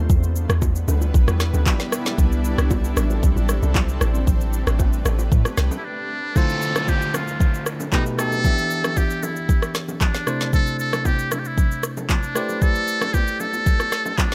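A dry, up-front mix opens this soulful, deep amapiano excerpt, where a round, dark log drum bass and a cloudy granular pad carry the opening over electronic drums with a deep kick and woody snare and soft-handed congas and bongos in the background, before a buzzy, muted trumpet with vibrato enters at 5.8 seconds and a bell-like tine electric piano and faint downlifter join at 6.4 seconds.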